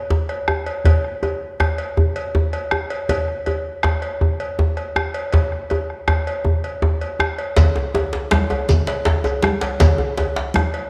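In a straight 12/8 pulse at 107 BPM (dotted quarters), this festive, powerful West African drum ensemble opens with a tight, cracking djembe played with soft hands up front, a round, close bombo and a metallic cowbell ringing in a live room. At 7.6 seconds a second djembe with a small-room crack joins, along with bright, thin-skinned, medium-tuned congas and a grainy, mellow shekere tucked dry in the background. The ensemble sits in a wet echo-chamber reverb, and this cut from a longer piece ends at 10.9 seconds.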